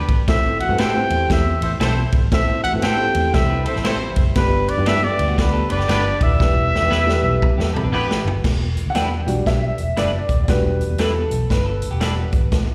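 A swung 4/4 groove drives this passionate excerpt of uptempo 1960s-style soul. It is carried by an up-front big-band drum kit with a punchy kick, snare, hi-hat, ride, crash and toms, and a dark, round, foam-muted fingered electric bass. A mellow trumpet with vibrato takes the melody. Behind it sit a distant, roomy horn section doubled in octaves and a ringing vibraphone played with soft mallets, its slow motor vibrato kept in the background. These three parts share plate reverb and slapback echo. An intimate, woody upright piano, slightly detuned with audible action noise, accompanies throughout, while a bright, twangy electric guitar at the edge of break-up adds compressed stabs through analog chorus, and a clean semi-hollow guitar plays a riff from 3.5 seconds. A drum fill at 6.4 seconds leads into a new section at 8.4 seconds, after the horns, trumpet and vibraphone have stopped, where the piano takes a solo. 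The band is heard live through a venue's PA, in the reverb of a recital hall.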